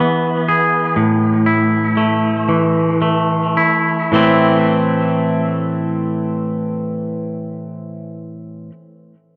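A dreamy mix soaked in plate reverb surrounds this brief, cinematic and brooding rock fragment in A minor, cut from a longer piece and moving in a slow 6/8 at roughly 35-42 BPM (dotted quarters). A clean, twangy electric guitar sits up front, picking arpeggios through a diffuse ambient delay from start to finish. The tempo slows over the first 4.1 seconds as the harmony moves from E to A5, then settles on A minor for the second section.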